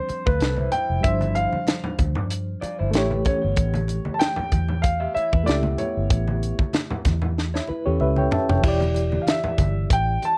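Lush 1970s-style soul at 95 BPM in 4/4 with a light sixteenth-note swing, silky and cinematic in mood, heard in a short cut from a longer piece. A grand piano carries the melody up front with a natural, warm tone. Beneath it, a reedy, barky electric piano, lightly overdriven and pulsing with fast tremolo through its built-in speakers, fills out the accompaniment. A foam-muted fingered electric bass sits up front with a round, amped sound, while a tight funk drum kit with a high-tuned snare, dark cymbals and a tight kick drives the groove alongside low-tuned, ringing congas played with hard hands. An electric guitar through a small old amp adds a slightly broken-up, compressed, picked riff bathed in spring reverb until 8.6 seconds. The harmony moves from G7sus4 to A7, and a drum fill from 7.4 seconds leads into a new section on Em7, captured in a dry, close 1970s-style studio sound.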